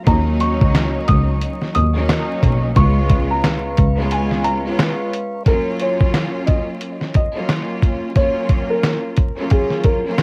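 Tough yet reflective, this boom-bap hip-hop fragment, cut from a longer piece, moves at 89 BPM in 4/4 with a swung sixteenth feel, tuned slightly flat to A4 = 436 Hz. An up-front, sampler-style soul drum kit carries a gritty, compressed sound with a thumpy kick, a fat snare, hi-hat and handclaps, all coloured by cassette tape. Beneath it, a rich, intimate double bass is bowed sul tasto with an airy, soft attack and light vibrato until 4.6 s, just after a break begins at 4.1 s. A soft, flute-like tonewheel organ holds sustained chords through a slow rotary speaker until 5.4 s, while a lush, intense string section accompanies and a dark, woody upright piano with a slightly detuned, boxy tone and short sustain carries the melody through an analog delay. The harmony moves from Ebm7 to Db7 and then to Gbmaj7, and the whole piece sits in light reverb with the vinyl crackle of a home cassette recording.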